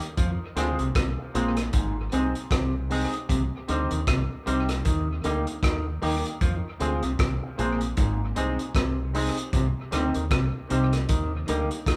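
Roots reggae in C minor at 77 BPM, this meditative, laid-back excerpt moves with a swung 16th-note feel through a recurring cycle of Fm, Ab, Cm and Eb. A crunchy breakbeat drum kit opens at 0.0 seconds with hi-hat, a tight kick and rim click, sitting up front with a saturated, gritty tone and a rolled-off top. At 0.2 seconds a deep, round fingered bass joins low in the register, alongside an overdriven clav riff whose stringy, percussive attack runs through a combo amp and trails off in dub echo. From 0.6 seconds an electric guitar adds bright, twangy accompaniment shaped by an envelope filter, while a grand piano contributes present stabs with long sustain. The band sounds as if playing live together in one room, bathed in a lush large-studio reverb, and the passage is cut from a longer piece.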